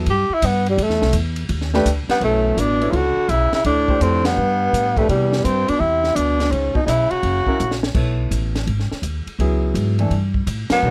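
Small-group swing and bop jazz in B minor, smoky and moody, moving at a brisk 167 BPM with a swung 4/4 feel in this short excerpt from a longer piece. A breathy, whispered tenor saxophone carries the melody up front with vibrato and scooped notes, soloing for the first 2.2 seconds before a distant, subtoned baritone saxophone joins as a second line, while a woody, thumpy pizzicato upright bass anchors the whole passage. A clear baby grand piano comps in two stretches, and a dry cocktail drum kit with dark cymbals, a high-tuned snare and a punchy kick keeps time and plays a brief fill around 7.6 seconds, while the whole band hits accents at 4.2 and 10.7 seconds, all under light reverb.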